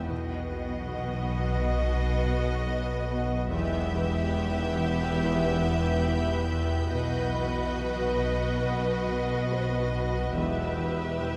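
This mysterious, ominous suspense film cue opens at once on a dense bed: bowed double basses and cellos hold the low end while a detuned, warbling analog drone with chorus hums alongside them at a slow 70 BPM in 4/4. Over this, a lush violin section carries a narrow, vibrato-laden melody, shadowed by a distant second violin line, as a smooth viola section fills the middle in the background. A glassy, ethereal FM pad sustains chords with its own ensemble chorus and built-in reverb, and a bright, ringing concert harp picks out a low riff. A felt-muted upright piano adds a very quiet, intimate texture with audible action noise. At 3.5 seconds a clear, focused high violin section enters as a further texture and holds until 9.9 seconds, while the harmony rocks between B and E minor. The whole excerpt sits in a wet scoring-stage reverb and breaks off at 11.4 seconds, cut from a longer piece.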